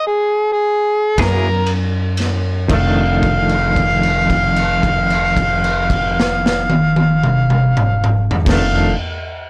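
Soulful and rollicking, this slow 12/8 blues at 37-45 BPM opens with an up-front, gritty harmonica soloing alone in a jazz style with light vibrato, tongue slaps and scooped notes, before a clean, compressed semi-hollow electric guitar with tremolo, a woody pizzicato upright bass with transformer saturation and a garage drum kit with a punchy kick in a small pumping room enter at 1.2 seconds, the tempo slowing through the opening and a held note sounding from 2.7 seconds, all captured in a blown-out, overdriven recording with faint mains hum.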